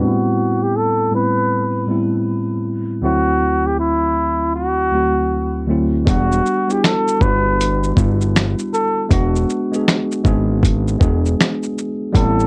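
A breathy flugelhorn carries the melody in a jazz style with light vibrato and scooped notes, softened by a low-pass filter, over a worn, slightly out-of-tune tine electric piano in this melancholic, reflective lo-fi hip hop excerpt at 79 BPM with a swung 16th feel. A filter sweep colors the opening until 6.1 seconds, when a fat, detuned analog bass and a gritty, overdriven sampler-style drum kit enter, bringing a thumpy kick, a fat snare, hi-hat, shaker and finger snaps. The chords move from Am7 and D7 to Em7 and E7, and the dry, cassette-tape sound keeps every part close and up front.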